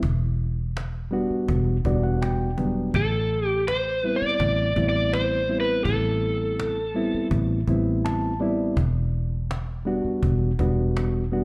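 Straight-eighth soul blues with a smoky, mournful mood, carried by a mellow, reedy electric piano with slapback echo and a round, foam-muted fingered bass sitting up front. A woody cajon with faint snares and hard hands sits further back in a small room, while a dark, overdriven slide guitar played with fingerpicks takes the melody from 3.0 to 7.3 seconds, framed by electric piano fills, one of which begins at 7.7 seconds. The whole is heard as a live club gig through the venue's PA, wrapped in light reverb.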